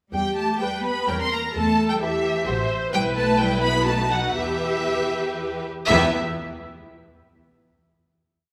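Set in a wet concert hall with a long reverb tail, this brief, complete movement for string orchestra in E minor moves at a quick, restless 3/4 pulse of 116-131 BPM, pushed and pulled with rubato to create an urgent mood. An up-front, rich violin section sings the expressive melody with vibrato and soft attacks, while the close, lush cellos double the tune at the octave, the smooth violas weave a counter-melody and sustained chords, and a distant, clear double bass section supplies both pizzicato and sustained bass. From 0.6 s a focused second violin line adds pizzicato and sustained chords in the rhythm of the tune, and the piece comes to rest on a final E chord at 5.9 s.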